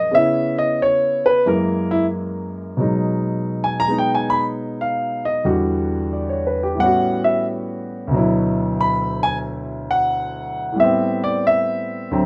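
Swinging and moody, this short cut from a longer solo jazz piece features a concert grand piano alone, its natural, up-front tone carrying deep bass beneath swung harmonies that drift from C#m7 through F#9 and B6 to Em9, A13, D69 and finally Am9, all set in light reverb.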